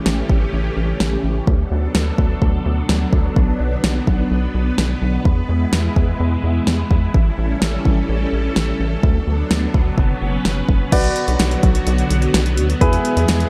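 This synth-pop excerpt opens on a string machine voiced as cellos, its vintage sawtooth chords sustained under a phaser and ensemble chorus, joined almost at once by a rubbery square bass and a deep house drum kit. At 127 BPM in B minor, the mood is nocturnal and cool, with the chords moving through A7, D6, Bm and E before an F#sus4 at 10.0 seconds. The drums sit up front with a deep kick, fat snare, hi-hat and crash, carrying a tape-softened, small-room character. The bass is hollow and bouncy, a wave-folded tone with a resonant filter pluck and fast attack that stays dark and prominent. At 10.9 seconds a concert grand piano enters as accompaniment, intimate and polished with audible action noise and long sustain, as the harmony returns to Bm and E. The whole is dressed in light digital ambience, giving a dark, warm production.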